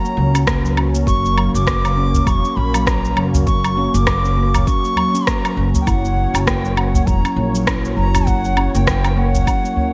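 Light studio reverb and a bright 1980s-style digital sheen frame this mystical, meditative organic downtempo excerpt, moving at 100 BPM in 4/4 with a swung sixteenth feel over an F# chord. A reedy bamboo bansuri with vibrato carries the melody through delay above a smooth, detuned sawtooth pad that pumps with sidechain. A handpan rings out airy arpeggios roughened by 12-bit sampler grit, while a very quiet bronze singing bowl adds slow-beating metallic shimmer. Tape-warm electronic shaker, woodblock and rim click with gated reverb arrive at 0.1 s, a deep electronic kick follows at 0.5 s, a woody, thumpy pizzicato upright bass sits up front with its own pumping, and a close acoustic udu joins at 2.1 s.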